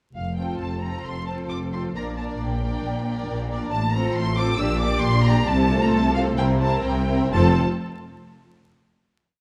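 A lush bowed violin section carries the expressive, vibrato-rich melody high over this lively, spirited classical-period movement for string orchestra in F major at 134 BPM with a rubato feel, as a second violin line and dark-toned violas with portamento add syncopated and sustained chords from 0.4 s, cellos mark the bass on the beats, and up-front double basses double that line, the ensemble sitting in a moderate scoring-stage reverb under a layer of vinyl crackle before settling on a final F chord at 7.3 s.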